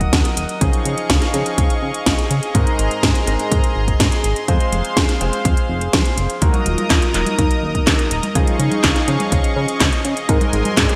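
Melodramatic and wistful, this straight-feel italo disco passage cut from a longer piece rides a punchy electronic kick and an up-front house kit of cracking snare, metallic hi-hats, congas and handclaps drenched in gated reverb, beneath a glossy chorused synth bass, a brilliant sawtooth analog pad holding sustained chords, and smooth background grand piano stabs trailing digital delay; a round, warbling synth brass melody with vibrato enters at 6.4 s, a very quiet riser appears at 10.7 s, and the mix sits in a lush hall reverb with a gleaming 1980s-style digital production sheen.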